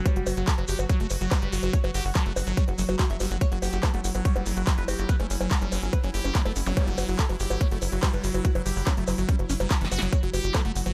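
Psychedelic trance at 143 BPM in F# phrygian, hypnotic and driving, where an overdriven, up-front electronic kick and a tight, punchy sequencer bass anchor a big-room dance kit of bongos, handclaps, crisp hats and punchy snare, while a squelchy, resonant acid bass riff with phaser, tape and delay winds beneath a gritty, screaming, guitar-like synth lead with chorus and dub echo, an evolving, morphing wavetable pad sustains chords in the background, grainy maracas add texture, a very quiet zap flickers at 6.7 seconds, and a drum fill lands at 9.7 seconds in this short cut from a longer piece.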